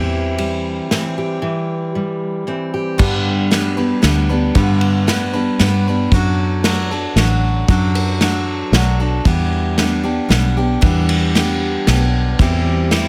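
A small-room ambience and light reverb frame this short indie folk excerpt in 3/4 at 115 BPM in G major, with a warm, anthemic mood and a building arrangement. A fingerpicked acoustic guitar and a round, foam-muted electric bass open the piece, and an up-front acoustic kit played with bundle sticks joins at 0.4 seconds, its dark cymbals sitting over a tight kick and a medium-tuned snare. At 3.0 seconds a bright, full-bodied picked jumbo acoustic with fresh strings enters, overlapping briefly with the fingerpicked guitar until that part drops out at 4.6 seconds, and picks through G, D and Em7 before the chords return to C/E.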